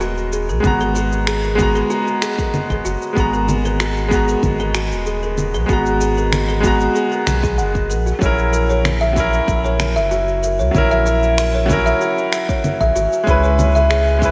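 Relaxed and smooth, this sunset chillout excerpt, cut from a longer piece, sets a bright, brilliant grand piano, intimate with audible action noise and given delay, over a round, mellow sine sub bass, while a woody, hollow-boxed kalimba with ringing thumbnail plucks and delay spins arpeggios through the chords from G#m9 to F#7 and C#m7. Layered electronic shaker, congas and finger snaps sit low from the start, and a deep electronic kick joins at 0.6 seconds, both carrying studio reverb. The whole mix is dreamy and soaked in a lush hall reverb.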